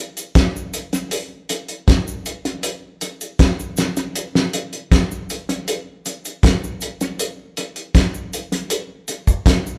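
Recorded live in a large studio with a moderate reverb, this smooth, longing reggae groove at 79 BPM in a straight 4/4 sets a cloth-damped, thuddy drum kit up front, its fat snare, tight kick and hi-hat carrying a rolled-off top and a touch of tape echo, while a cabasa sits close but in the background from 0.2 seconds to the end of the short cut at 9.8 seconds.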